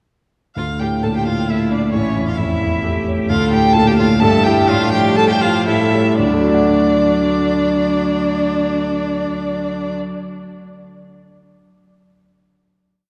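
A focused, vibrato-rich violin carries the melody up front in this quick, stormy and restless classical-period piano quartet piece in 3/4 with a rubato feel, while a second, smoother violin doubles the tune at the octave, a distant cello enters at 1.0 seconds with a counter-melody and sustained chords, and a concert grand with deep bass and long sustain rocks through broken chords, the ensemble slowing from 2.6 seconds until a final chord arrives at 6.2 seconds, all bathed in a wet church reverb with a dark, warm production.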